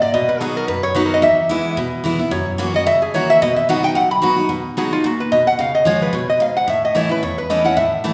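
Virtuosic and joyful, this bluegrass passage, cut from a longer piece, races along at 220 BPM in 4/4 with a swung eighth-note feel in B major. A lap resonator guitar, played with fingerpicks and a steel bar, carries the melody up front with a metallic, nasal slide tone, taking a solo through the opening 4.5 seconds. Beneath it, a picked steel-string acoustic guitar on a jumbo body supplies bright, full-bodied accompaniment, also placed up front. The harmony moves from B through E and F#7 back to B, then shifts to C# and A during the second section, which begins at 4.5 seconds. Both guitars sit in a reverberant church or concert hall, giving the lively playing a lingering, spacious glow.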